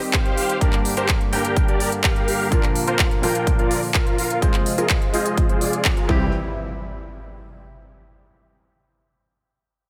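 Festival progressive house at 126 BPM in a straight 4/4, this anthemic, powerful passage is cut from a longer piece. A clear concert grand piano with a deep bass and long sustain carries the accompaniment through Cm, Gm, Bb and Fm, pumping against the kick and trailed by dub echo, while a lush, nasal unison pad holds sustained chords with chorus in the background. A huge, thick supersaw riff enters at 0.1 seconds, heavily compressed with vibrato and dub echo, and a filter sweep runs across it as it pumps in time. The punchy electronic kick sits up front alongside a pop kit of handclaps and crisp hats, both in studio reverb. At 6.1 seconds the harmony lands on C as a menacing, beating detuned saw bass slips in underneath and an electronic impact rings out until 8.0 seconds, opening the next section under light overall reverb.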